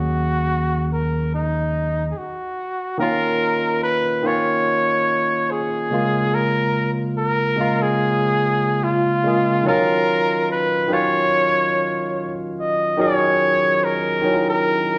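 A clear, punchy flugelhorn carries the melody from Eb4 to Eb5 across the whole fragment, playing in a pop style with light vibrato and scooped notes up front. This is a smooth, sultry R&B cut in Eb minor at 72 BPM in 4/4, with a gentle 16th-note swing. A bright, barky tine electric piano, clean through a combo amp, accompanies throughout on chords moving from Ebm9 to Eb7sus2, Bbm7/Db and back to Ebm9. A warm, amped fingered electric bass holds Eb2 only until 2.1 seconds, and the band stops from 2.2 to 3.0 seconds before the second section begins. The players sound live together in one room, wrapped in a wet stone room reverb.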